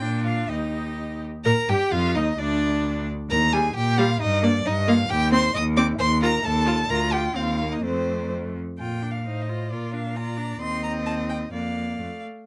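Graceful and spirited, this quick classical-period movement for string quartet in 2/4 unfolds with a rubato feel: an even first violin with vibrato sings the melody, a focused second violin sits up front on its own line, a rich, intense viola with a smooth top supplies the accompaniment and a clear cello anchors the bass, each part bowed by a single player and caught by close, detailed microphones in light reverb, in a passage cut from a longer piece.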